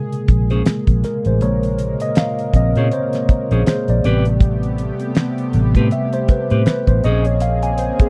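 R&B with a neo-soul lean, this short excerpt cut from a longer piece moves at an unhurried 80 BPM in 4/4 with a swung sixteenth feel, setting a late-night, sultry mood in Bb dorian. A mellow tine electric piano carries the spotlight throughout, clean and close, heard through its built-in speakers as it plays across the Bbm9 to Am9 and back to Bbm9 changes. Underneath, a damped 70s drum kit sits up front with a fat snare, tight kick, hi-hat and finger snaps, its dark, rolled-off top keeping the groove smooth. A vintage muted fingered electric bass enters at 0.3 seconds, round and punchy with a foam-muted, amped tone, while a clean picked electric guitar adds a second line from 0.5 to 7.2 seconds. A chorused pulse-width pad holds soft-attack sustained chords in the background, its detuned, shimmering retro colour softening the edges of a dry, intimate 1970s-style studio sound.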